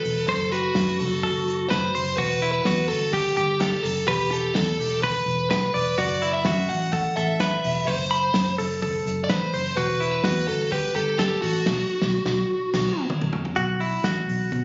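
Bittersweet and wistful, this short cut from a longer jangly indie pop piece moves at 126 BPM in E minor, with a biting, overdriven lead guitar carrying the melody over twangy, compressed arpeggios from a clean, direct-recorded electric guitar. A vintage drum kit with dark cymbals and a punchy kick and a round, foam-muted fingered electric bass form the rhythm section, the whole band captured on a phone in the room with light studio reverb and a muffled top end. A band accent lands at 11.7 seconds on a B5 chord, a drum fill follows at 12.6 seconds, and the lead guitar drops out at 13.0 seconds as the other parts carry on into a brief new section.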